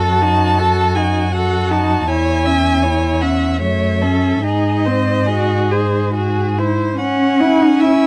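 Classical slow romantic movement for string quartet in C# minor, a yearning, melancholic cut from a longer piece moving in a rubato 3/4 at 69-81 BPM. The first violin sings the bowed melody with focused vibrato and a smooth top over a rich second violin line, while the viola's expressive accompaniment adds soft attacks and portamento, and an up-front, woody cello anchors the bass. Light reverb and a dark production frame the quartet, and at 7.0 s the harmony settles onto C# minor as a new section begins.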